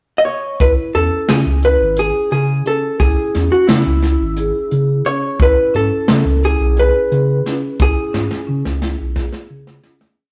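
This tense, intricate progressive instrumental moves in 7/8 at 175 BPM (eighths) with a straight feel in C# minor, tuned to A4 = 439 Hz. A dark, clean hollow-body jazz guitar, picked, compressed and up front, opens alone in a short pickup bar and carries a motif-based melody built from arch phrases. At 0.6 seconds the band arrives: a woody marimba with medium hard mallets on rosewood bars plays a warm ostinato of arpeggios, a deep, smooth sine sub bass with a fast attack drives a syncopated riff, and an acoustic brush kit with a tight kick and medium-tuned snare sits up front in the 7/8 groove. The harmony moves from C# minor to E at 5.4 seconds, and a drum fill closes the piece during a fade-out that begins at 7.8 seconds. The whole recording has a rough rehearsal-room character, with warm saturation and a moderate stone-room reverb.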